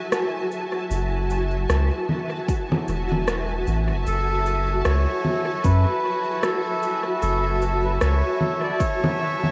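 Hazy and deep, this ambient dub fragment at 76 BPM in F# minor rests on a single F#m7 chord, where a cloudy, detuned granular pad and echoing electronic rim click, cabasa and congas open the 9.5 seconds, a round, soft sub bass arrives at 0.9 seconds, an overdriven electronic kick enters at 2.5 seconds, and a reedy, breathy melodica with dub echo appears at 4.1 seconds, joined at 4.5 seconds by a faint bubbling, resonant filter texture, all soaked in huge reverb and vinyl crackle.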